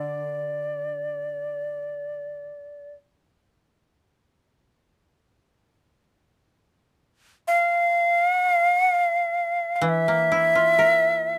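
A breathy, bright shakuhachi carries the melody up front in this short, still passage of Japanese chamber music, its end-blown bamboo tone marked by vibrato, tongued chiff and lifted highs as it moves in free time through D hirajoshi within a narrow span from D5 to F5. Beneath it, a dry, woody koto plucked with fingerpicks sounds only from the opening to 2.5 seconds and returns at 9.8 seconds, sitting well back in the balance. Close, detailed microphones and very little reverb keep the meditative mood intimate, as if heard from within arm's reach.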